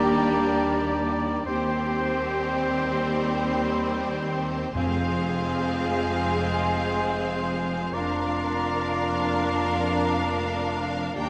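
Cinematic and bittersweet, this sorrowful orchestral passage, cut from a longer piece, sets a smooth, vibrato-laden violin section melody over a second violin line, airy flute, mellow clarinet, oboe, lush bowed violas, French horn chords, a rich cello section and a double bass section moving from Ebmaj7 through Cm/Eb and Fm to Bb/F, while soft-mallet timpani sound a round, dry note from 4.7 to 5.9 seconds, all bathed in scoring-stage reverb and vinyl crackle.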